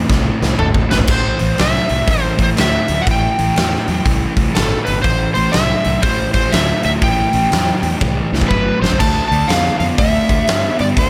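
Blues rock power trio with a southern rock edge, heavy and smoky at 121 BPM in a swung 4/4 in A minor, where a dark, double-tracked fuzz guitar riff with slapback echo and a growly, punchy fingered bass drive over a huge arena drum kit with a fat snare and fills at 0.1 and 8.0 seconds, while an overdriven slide guitar carries the melody from 0.6 seconds in a lush hall as the harmony moves from Am7 to Dm.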